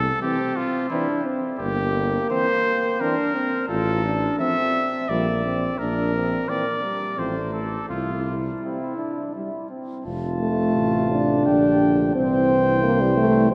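A steady, straight three-beat pulse carries this noble, stately classical passage for brass quintet, heard as an excerpt from a longer piece. A clear, punchy trumpet sits up front with the melody, while a tuba anchors the bass from the first moment. The flugelhorn enters at 0.2 seconds with a smooth-topped second line in the background, and the French horn and trombone join at the same moment as mellow accompaniment, the trombone carrying a light vibrato. The harmony moves through gently shifting chords before a new section begins at 10.1 seconds. Everything rings out in a vast cathedral, its long, wet reverb filling the echoing space around the players.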